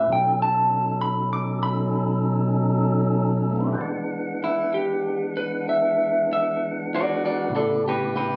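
A laid-back, swaggering blues excerpt in 12/8 at 64 BPM opens with a slightly broken-up, compressed electric guitar melody through a small old amp, up front over a fat tonewheel organ holding sustained chords with key click and a slow rotary speaker, moving through B9, E9 and A9 in E mixolydian, before the guitar takes a clean solo from 3.8 to 8.4 seconds, all set in a large, wet studio reverb with the feel of a band playing live in one room.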